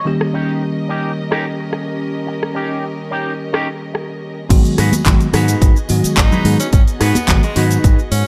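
A sensual, sleek nu-disco cut at 108 BPM in G# minor opens with a bell-like tine electric piano up front, dark bowed sul tasto strings with light vibrato pumping beneath, and a twangy, clean envelope-filtered guitar riff with lush chorus and slapback echo, as a filter sweep plays across the guitar and an overdriven house kit with bright, filtered hats, handclaps and shaker settles in. At 4.5 seconds the drop lands with a punchy, overdriven electronic kick, a bright fingered bass with its own envelope filter, and close tambourine and congas in the background. An edgy, forceful tenor saxophone with tape echo enters at 6.2 seconds for a brief pop-style solo line before the excerpt cuts off.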